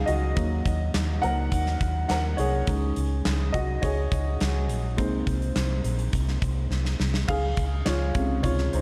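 A straight 4/4 pulse at 104 BPM drives this short, uplifting cut from a piano-driven pop piece in Db major, with a huge arena drum kit of punchy kick, medium-tuned snare, handclaps, hi-hat and bright crash cymbals that lands a drum fill at 6.7 s. A woody, worn and slightly detuned upright piano leads through Ebm, Dbsus2 and Abadd9 before a rootless Gbmaj7sus2 opens a new section at 7.3 s, while a vintage foam-muted fingered electric bass adds a round, dark low end. The upfront parts sit in a moderate large studio reverb with a little small-room ambience, giving a dark, warm production.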